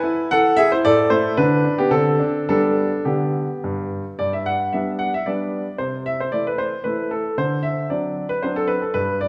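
A warm, natural-sounding baby grand piano sits up front and carries this short, playful fragment of a classical-period sonatina alone, moving in a cheerful 3/4 at 113 BPM with a gently rubato feel in G major, tuned slightly high at A4 = 441 Hz. Its opening phrase passes through E, Am and G/D before settling on G, then returns at 4.2 seconds for a second statement that leans toward Am/C and D7. A lush recital-hall reverb, the sound of a church or concert hall, surrounds the piano with a lingering glow.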